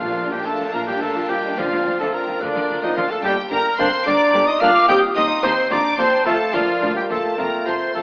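Through a narrow AM-radio sound and the long wash of a scoring-stage reverb, this lively, graceful snippet of a quick classical-period orchestral movement in a rubato 6/8 sets a lush, vibrato-rich violin section on the high melody. A hollow flute section, a distant oboe, a very quiet clarinet and softer background violins weave second lines, while a dark vintage bassoon and faint violas accompany. A tight French horn section holds sustained chords, a smooth-topped trumpet adds soft stabs, cellos and double basses (entering at 0.2 s) carry the bass, and hard-mallet timpani sound only in the opening 0.7 s.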